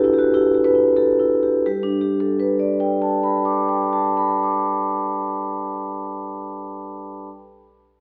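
A solo vibraphone, played with soft mallets and its motor off, opens this short contemporary classical excerpt, its metallic, ringing tone sitting up front yet staying mellow. The mood is flowing and playful, moving at about 88 BPM in 5/4 with a rubato feel in G major. The opening, built on a Dsus24 chord, slows down over its first 1.6 seconds before a new passage begins there on Gadd9. The instrument ranges from G3 up to D6, and the playing carries through to the close at 7.3 seconds. A wet recital hall reverb surrounds the playing, while an AM radio quality narrows the sound.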